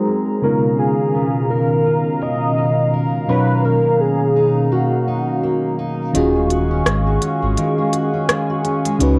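A moody, late-night contemporary R&B piece in Eb minor at 84 BPM opens with a dark, tremolo-laden FM electric piano in the background, a hollow, flute-like pad with chorus, and a fingerpicked jumbo acoustic guitar playing arpeggios through tape echo, the three softened by cassette-tape grain under a filter sweep. At 0.4 seconds a velvety, detuned synth lead takes the melody up front, shimmering with chorus, phaser and vibrato over Db13 and Bmaj9#11 chords. At 6.1 seconds a smooth electronic drum kit with silky hi-hats and rim clicks enters on swung 16ths, joined by a deep sine sub bass with octave as the harmony settles on Ebm11, set in light digital reverb.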